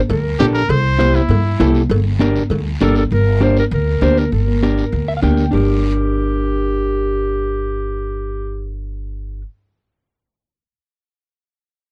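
A dark production with light reverb opens this short cut from a passionate, danceable cumbia in G dorian at 198 BPM, where a woody, thumpy pizzicato upright bass sits up front and a slightly broken-up, fingered electric guitar accompanies from 0.4 seconds onward, adding a clean fill near 4.9 seconds. A bright trumpet with vibrato carries a brief second line early on over a Gm to C to Gm progression, while a smooth, classical-style clarinet sounds briefly at the start and then returns with the solo melody from 2.8 seconds. High-tuned congas with soft hands stay in the background beside a raspy, saturated guiro until 5.6 seconds, and ringing, close cowbell and timbales drop out at 3.0 seconds.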